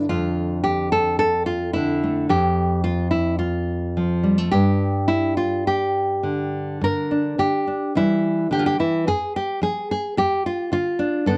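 Folk fingerstyle piece, hopeful and pastoral, with a solo nylon-string guitar fingerpicked up front in a dry, close 1970s-style studio sound, its classical tone carrying audible finger squeak at 108 BPM in a rubato 4/4 feel, moving through Dm/F, G5 and C across a short section cut from a longer piece that shifts to new material at 6.8 seconds.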